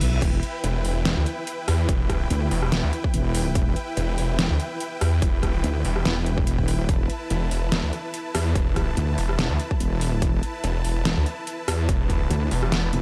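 A menacing, heavy wobble dubstep excerpt opens with bright, detuned supersaw chords held under sidechain pumping, a saturated wobble bass thickened with chorus, and an overdriven drum kit of deep snare, metallic hi-hats, rim clicks and crashes in a half-time feel. A punchy, overdriven kick joins at 0.2 seconds, and at 0.6 seconds a growling, distorted saw bass with a moving notch arrives up front beside the wobble. The dark production stays dry, with both drum parts carrying a small-room tone.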